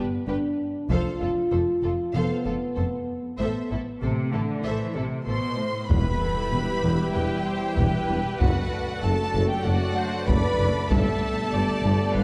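An epic, heroic orchestral film cue at 96 BPM opens with a close, focused studio violin section carrying the melody over a smooth, lush second violin line, intense violas, dark French horn chords and a rich bowed cello and double bass foundation, while a distant taiko ensemble with hard sticks strikes briefly at 0.9 seconds. At 5.9 seconds a huge, bright impact and a timpani hit on calf heads mark the start of the second section, as the taiko returns, mellow trombones and a further string section add background chords, and a roomy tuba deepens the bass. The whole orchestra sits in a wet concert hall reverb, with the harmony moving from G through Am and Em to a closing Gadd9.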